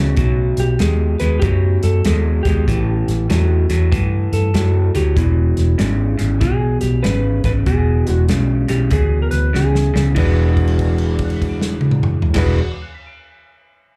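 A slightly broken-up, lo-fi electric guitar riff with slapback echo opens this gritty, swaggering electric blues shuffle, alongside a round, foam-muted bass up front and a boxy grand piano with plate reverb in the background, while a punchy, polished country drum kit joins almost at once. A dark, clean lap steel slides in with the melody at 0.6 seconds, carrying both plate reverb and slapback echo over a B7, A7 and E7 progression. A drum fill at 9.5 seconds leads to an E9 chord and a held note from 10.2 seconds, all heard as a live club gig through the venue's PA in this cut from a longer piece.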